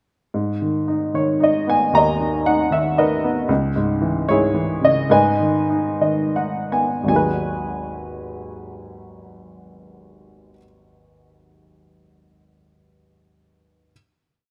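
Classical solo piano in G# minor, cool and bittersweet, moving in a rubato 3/4 between 81 and 116 BPM, as a woody, slightly detuned vintage upright sits up front in light reverb, voicing a motif-based melody in period phrases over a broken-chord accompaniment through G#madd9, C#m and G#m, slowing from 3.5 seconds into a short fill and settling on a final chord at 7.1 seconds.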